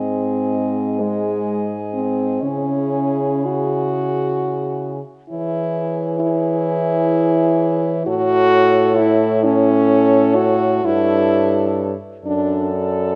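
A dark, smooth-topped French horn carries the accompaniment up front in this lyrical, serene excerpt for horn quartet, a rubato classical passage in 6/8. A distant, mellow horn sings the melody in the background, while a second horn adds a vintage line with light vibrato and a roomy horn anchors the bass, all set in light reverb. The harmony turns at 8.1 s, and the accompanying horn stops at 12.7 s, just before the others finish.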